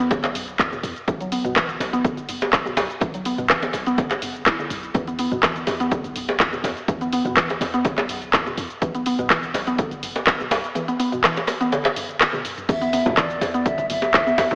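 Earthy and driving, this afro house cut rides woody, chorused mallet-like synth pluck arpeggios over a boomy 808-style bass set in the background, a punchy electronic kick, an up-front house drum kit with crash, handclaps, hi-hat, rim click, shaker and toms, and a deep, hard-handed djembe, until a drum fill at 12.2 seconds brings in a breathy, hollow concert flute melody and bright, soft-handed congas, the mix steeped in lush hall reverb and an AM radio character.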